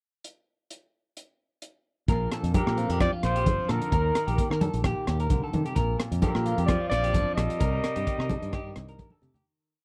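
A dry, close recording in a 1970s studio style, with light reverb, carries this short, complete highlife guitar band piece in Bb major at 130 BPM, its sixteenths swung and its mood warm and carefree. A crunchy breakbeat drum kit opens alone at 0.2 seconds for a pickup bar, dark and saturated with a punchy kick, rim clicks and hi-hat sitting up front. At 2.1 seconds the band joins: a round, fingered electric bass playing a syncopated riff, ringing medium-tuned congas in the background, a full-bodied nylon-string guitar fingerpicking an alternating-thumb pattern with audible finger squeak, and an electric guitar at the edge of break-up repeating a picked arpeggio ostinato through lush chorus and tape echo. From 2.6 seconds a breathy, dark trumpet leads with scooped notes, vibrato and song-like motifs, while a bright, punchy alto saxophone shadows it in the background with a harmony line mostly in sixths. 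The chords move from Bb to Eb, back to Bb and on to Cm as the piece fades out, closing with a brief drum fill that ends at 9.4 seconds.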